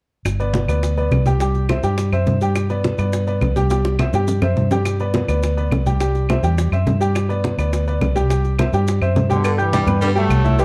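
A festive salsa groove in straight 4/4 at 209 BPM rides on a round, foam-muted fingered electric bass up front, with hard-hand congas, low-tuned bongos and cowbell, woody claves and grainy maracas tucked in the background, and a drum fill from 3.7 to 4.9 seconds. A brilliant upright piano with audible action noise sits forward over a sunny G major vamp alternating G and C before landing on Gadd9. At 9.3 seconds a tight trombone section with light vibrato takes the melody, joined by a raspy, breathy baritone saxophone on a second line, all within a dark production and a moderate large-studio reverb in this excerpt cut from a longer piece.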